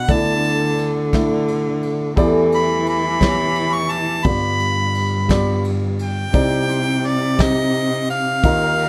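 Bathed in light reverb, this short cut from a reflective, melancholic acoustic folk-pop ballad in 6/8 at 58 BPM sets an up-front, clear harmonica melody with light vibrato over a mellow, intimate felt-muted upright piano, very quiet ringing fingerpicked harp arpeggios, an expressive bowed cello bass with vibrato and portamento, and a dark, rolled-off brush kit with a fat snare and punchy kick, moving through Dsus2, Em7, G7 and Cmadd9.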